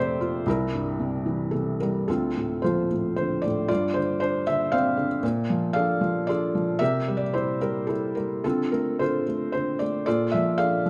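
Classical solo piano in a lyrical vein, this short excerpt from a longer piece has a moody, cool atmosphere in D minor, played in 3/4 with a rubato feel that moves between 106 and 119 BPM. A felt-muted upright piano carries everything alone from 0.0 to 10.9 seconds, ranging from C2 up to F5, and its tone is soft, mellow and intimate. The instrument sits up front, close enough that the action noise of the keys and hammers comes through naturally. The harmony drifts through seventh chords, opening on C7 before settling onto Dm7 at 2.1 seconds, then passing through G7sus4, Bbmaj7 and C7 before returning to Dm7 and closing on Bbmaj7. A moderate concert-hall reverb gives the close piano a gentle sense of space. The tuning sits slightly below standard, at A4 = 437 Hz, and the top end is rounded off.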